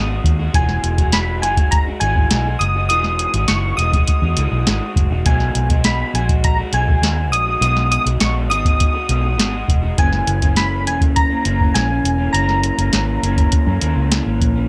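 Indie pop with a bedroom pop haze, this sunny, nostalgic passage moves at 102 BPM in a straight 4/4, cut from a longer piece and centered in B major. A soft vintage rhythm box sits up front from 0.2 seconds, its deep kick, tonal snare and metallic hi-hats giving an analog electronic pulse. Beneath it, a vintage muted fingered electric bass sounds dark and round, foam-muted yet amped and placed prominently in the mix. An electric guitar through a small old amp supplies the accompaniment with a slightly broken-up, lo-fi picked tone, bathed in lush chorus and vibrato. Over the top, mellow electric-piano-like synth keys carry the melody high, between G#5 and D#6, with a gentle, triangle-and-sine character, fast attack and decaying notes, colored by ensemble chorus and tape echo. The harmony drifts from B6 to Emaj9, back to B6 and on to F#7, all within light reverb.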